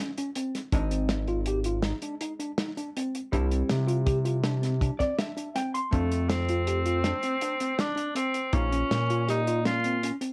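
Intricate and bright, this progressive instrumental clip in 7/4 at 161 BPM opens with a dark, clean hollow-body jazz guitar and a tremolo-laced tine electric piano, joined by a dry, muffled soul drum kit and an up-front saturated synth bass, with a guitar fill at 4.8 seconds before a bright alto saxophone with light vibrato enters at 5.9 seconds, all passing through light reverb and worn, warbling cassette tape over chords moving from Bbm through Ab, C and F.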